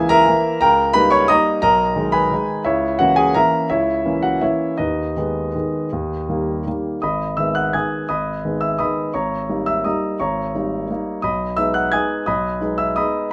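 A lilting waltz in three, pushed and pulled with rubato, opens this bittersweet, elegant classical excerpt for solo concert grand piano, cut from a longer piece. The piano sits up front with a deep bass and a range reaching from low G#1 to high G#6, its dark minor harmonies shifting through diminished and dominant colours before a new section settles in at 7.0 seconds. Close, detailed miking and light reverb give the instrument an intimate yet airy presence.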